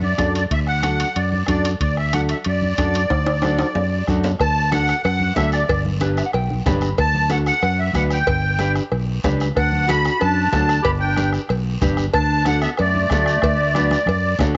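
A reedy musette accordion carries the melody up front from the opening moment, its shimmering tone set over a punchy fingered electric bass and very quiet congas with hard hands, in a sunny, danceable cumbia in D major at 186 BPM. Just after, a dark, clean electric guitar joins on accompaniment, with a soft-beater bombo, ringing timbales and cowbell, and a raspy guiro tucked in the background. The harmony rocks between D and G, a drum fill arrives at 3.1 seconds, and the guitar takes a short fill at 6.0 seconds. At 9.6 seconds a bright clarinet enters with a jazz-style second line, its vibrato and scooped notes lending a vintage flavour. Moderate spring reverb and the cassette-tape character on the accordion, guitar and clarinet give this homemade recording a dulled, band-limited top end, and the piece is cut from a longer performance.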